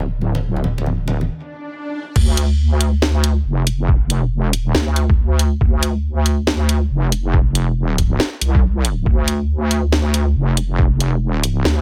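Deep dubstep in D minor at 139 BPM with a swung, half-time feel, dark and heavy: a resonant, detuned square-wave wobble bass with chorus sits up front throughout, saturated congas with dub echo open the piece until 1.3 s, an electronic swell leads into the drop at 2.2 s, and then a gritty, pitched-down, thumpy sampler kick joins a layered garage kit with a cracking snare, hi-hat and crash cymbal in a small room, all in a digital-sounding ambience cut from a longer piece.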